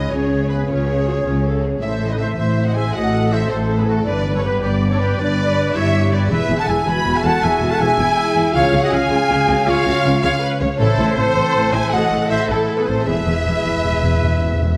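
Rolling in 12/8 at 107 beats per minute counted in dotted quarters, this cinematic passage in E major, cut from a longer piece, feels adventurous and triumphant. A warm violin section carries the melody with vibrato and a soft attack, while a second, richer violin section sits in the background on a supporting line alongside a very quiet, airy flute group. Violas supply smooth, even accompaniment, mellow French horns hold distant sustained chords, and a concert harp adds ringing thumb-plucked arpeggios, very softly. A vintage-toned trumpet section punctuates with stabs, and dark cellos with portamento join double basses to anchor the bass under a progression moving from C# through Am and G to E. At 13.1 s the timpani, played close with medium mallets on calf heads, enters with a fill, all set in a moderate scoring-stage reverb.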